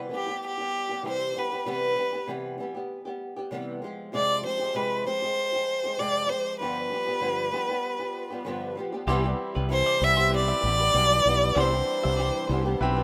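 A gently swung 4/4 pulse at 97 BPM carries this heartfelt, carefree acoustic pop excerpt in C major, cut from a longer piece and moving through Cmaj7, Fmadd9 and G7 before returning to Cmaj7. A small, fingerpicked nylon-string guitar, double-tracked, lays down the accompaniment from the start. A clear violin, played by one bowed player with focused vibrato, sits close and up front, carrying the melody. At 9.1 seconds the arrangement fills out: a round, punchy fretless electric bass comes in dark and direct, a brilliant baby grand piano with audible action noise adds polished accompaniment in the background, a reedy, breathing hand-pumped harmonium holds very quiet sustained chords in a boxy small room, and a twangy, compressed twelve-string electric guitar picks clean arpeggios behind everything until 12.6 seconds. The whole has a rough home demo character with light reverb.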